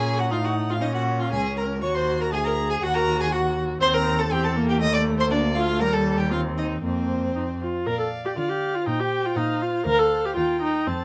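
This quick, cheerful classical-period movement for string quartet opens with all four bowed instruments playing together in a straight duple metre, a spirited passage cut from a longer piece. The first violin carries the melody with a soft attack, expressive portamento and vibrato, while the second violin adds a rich, focused second line that sits distant in the blend. Up front, the viola supplies an expressive accompaniment with its own portamento and vibrato, and the cello anchors the bass with a warm, smooth-topped tone. A new section begins at 7.9 s, and the four players continue together until the close at 11.0 s. Close, detailed microphones and light reverb give each single player a clear, intimate presence.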